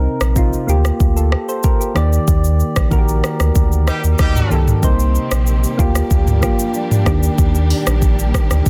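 A round, deep sub bass anchors this sultry, hypnotic afrobeats excerpt at 94 BPM, with a produced afro-pop drum kit up front: a deep kick, warm hats, rim click, shaker, toms and a softly clipped snare. Gentle electric-piano-like synth keys with chorus cycle through Cm7, Gm7/D and Ebmaj7 as the band hits an accent. A distant, roomy horn section with tape echo and vibrato appears briefly at 3.9 seconds, and from 4.8 seconds a lush bowed string section adds sustained chords with expressive portamento, all in a dry, dense, heavily limited mix.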